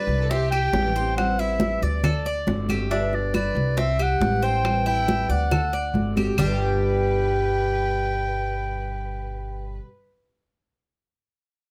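A soft-attack clarinet carries the melody up front from the opening of this sunny Cuban son and guajira passage, over warm fingerpicked nylon-string guitar, bright, metallic double-strung tres arpeggios and an intimate sul tasto violin section that drops out at 1.3 seconds. A dark, thumpy pizzicato upright bass sits prominently beneath bright, thin-skinned congas, round low-tuned bongos and woody claves further back, and a drum fill from 5.5 to 6.4 seconds leads to the percussion falling away at 6.5 seconds, all within a moderate studio reverb. The violins return at 6.4 seconds with light vibrato for the closing section, as the harmony cycles through C, Am7, D7 and G.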